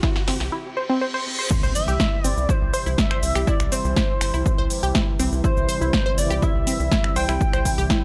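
A dry mix opens this euphoric, uplifting progressive house excerpt at 122 BPM in C major, where a short build-up of drum fills, a riser, a reverse cymbal and a filter sweep on the lush, detuned unison pluck arpeggios gives way to the drop at 1.5 seconds with an electronic impact. The punchy, up-front, tape-warm electronic kick leads a layered house kit of snare, hi-hat, shaker, finger snaps, toms and crash, while a tight, driving sawtooth-and-square sequencer bass and an evolving supersaw swell of sustained chords pump with sidechain beneath the pluck's dub echo. From 1.8 seconds a smooth, expressive synth lead with analog chorus, vibrato and dub echo carries the melody, joined very quietly by a pure, gentle FM bell on a second line.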